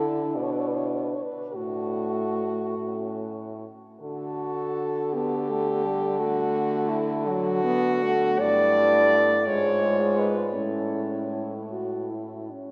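Four French horns sound together from the first moment in a tender, serene classical piece with a rubato 6/8 lilt: a distant, lightly vibrato-tinged melody horn sings alongside an up-front second line, a mellow accompanying horn with a smooth top, and a roomy bass horn, set inside a long, wet cathedral reverb as the harmony moves from Bm to D at 4.0 seconds and settles on A at 10.5 seconds.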